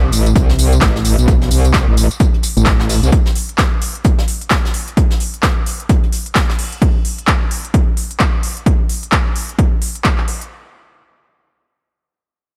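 A metallic, wobbling bass opens this gritty, swaggering bass house excerpt in A minor, its saturated, chorused growl sitting up front with a sidechained pump before it drops out at 3.1 seconds. A punchy, overdriven electronic kick drives the swung 130 BPM groove alongside a layered big-room dance kit of handclaps, tambourine and crisp hi-hats, both given a gritty overdrive and the character of a large room. Tucked in the background until 6.7 seconds, a jazz brush kit adds a high-tuned snare and filtered hi-hat, and the whole mix stays dry and close.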